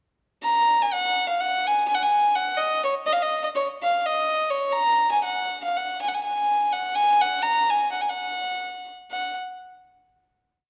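A dark, warm production sets a lone violin close and up front in a recital hall whose moderate reverb lingers for about 1.5 seconds. This is a complete Balkan folk piece in 9/8, counted in quick eighths at 248 BPM with a straight feel, in F# major and running only about ten seconds. The mood is wild and virtuosic, carried entirely by the solo violin from 0.4 to 9.4 seconds. Its nasal, reedy gut-string tone and airy bowing give it a period-style character as it stays within a tight span from C#5 to A#5. The melody is built from short motifs shaped into period phrases, and a final note from 9.1 seconds rings into the hall to close the piece.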